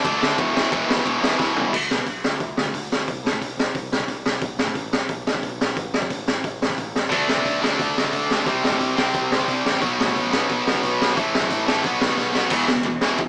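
The recording has a dry, boxy, small-speaker sound, with little reverb and the drums and guitar pushed up front. This is an upbeat, rebellious punk rock excerpt at 178 BPM in a straight 4/4, tuned slightly low to A4 = 435 Hz. A bright, double-tracked distorted electric guitar plays a tight picked riff over an E5 opening, drops out at 1.7 seconds, and returns at 7.1 seconds to drive a D5, C5, B5, A5 progression back toward E5. Beneath it, a picked electric bass growls with overdrive, sitting in the background with a warm, amped tone throughout. The raw garage kit sounds saturated and gritty, with a high-tuned snare, a boomy kick and a rolled-off top, working across crash, ride, hi-hat and toms. Short drum fills mark the turns into new passages, the last one at 12.2 seconds.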